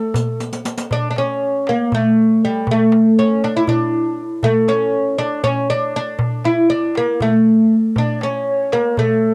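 Set in a straight 7/8 at 238 eighth-note beats per minute, this festive, stately clip from a longer Turkish makam ensemble piece sits in A hicaz, led up front by a bright, woody fretless oud, plectrum-plucked on double strings with a cassette-tape colour. A crisp, close and dry metal-shell darbuka enters at 0.1 s, with a drum fill from 0.4 to 0.9 s, while a dark-jingled riq adds brief color until 0.9 s. A breathy, distant end-blown ney with soft attack, unsteady vibrato and the same tape tint sounds faintly at the start and returns at 8.0 s, all within a lightly reverberant home cassette recording.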